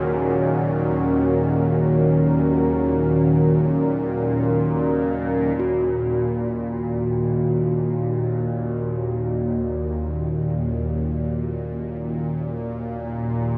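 A tense, string-like drone with a bright, detuned sawtooth edge and a phaser hangs up front in Eb minor, while a deep, moody pad with a sub octave and chorus holds sustained chords above it and a mellow bronze singing bowl rings softly in the background, all in free time, giving this desolate, ominous dark ambient fragment a vast, echoing space with a long 7.7-second reverb tail.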